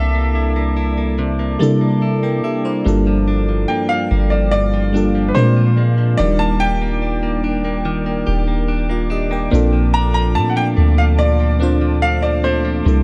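A round 808-style bass sits up front in this contemporary R&B excerpt, its deep sine tone striking with a fast attack and decaying beneath a longing, sensual mood. Above it, a clear baby grand piano carries the melody with a natural, short sustain, while an FM electric piano supplies glassy, bell-like accompaniment thickened by chorus. A direct-recorded clean electric guitar plays compressed, picked arpeggios bathed in spring reverb. A moody ambient pad holds detuned, warbling sawtooth chords in the background with a slow attack, long release, and its own chorus and built-in reverb. All five parts play throughout the 13 seconds, moving from C13 and Gm7 through Bb7 and Ebmaj7 to Bbmaj7, while light reverb and digital ambience give the dark production a gentle sense of space.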